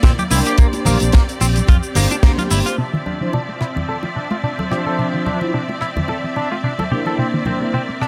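Opening on a punchy, round fingered bass and a tight, dry kick under a high-tuned funk kit, bongos and congas, a twangy clean electric guitar riff and lush distant strings, with dark, detuned synth brass joining at 0.3 seconds, this sleek, cosmic nu-disco excerpt at 109 BPM in D minor drops the bass and kick after a band accent at 2.2 seconds. It then brings in a gritty sampled unison pluck arpeggio at 2.8 seconds as filter sweeps move across the guitar and pluck over sidechain-pumped chords moving from C9 and Bb69 to Dm9.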